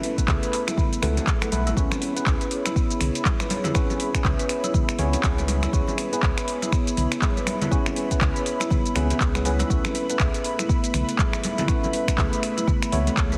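Warm and earthy, this afro house excerpt moves at 121 BPM in C# minor with a swung sixteenth-note feel, cut from a longer piece. A deep, up-front electronic kick anchors the groove alongside a produced afro-pop kit of finger snaps, handclaps, metallic hi-hats, shaker and toms, while ringing, band-limited congas struck with hard hands sit in the background. A round sine sub bass with a fast attack pumps against the kick, and a moody, detuned analog pad, wave-folded with a sub octave and chorus, holds slow-blooming sustained chords that also pump. Woody rosewood marimba arpeggios echo through delay, and a worn, slightly out-of-tune tine electric piano adds lightly overdriven stabs, delayed and pumping, that sound as if played through built-in speakers. The harmony moves from Asus2 to C#m7 at 1.8 seconds and back to Asus2 at 9.7 seconds, all set in a light digital ambience with a heavily compressed, radio-like finish.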